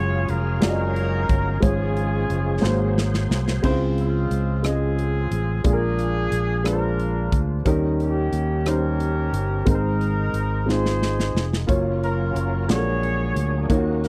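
A punchy, amped fingered electric bass and an airy, up-front acoustic drum kit with a punchy kick anchor this soulful, reverent slow gospel passage in 6/8 at 60 BPM in Db major, where a distant, roomy horn section with light vibrato carries the melody over a woody upright piano with audible action noise, while a gritty, overdriven tonewheel organ with slow rotary speaker and key click sits in the background, drops out at 3.7 seconds and returns at 11.7 seconds, all captured in a dry, close 1970s-style studio sound.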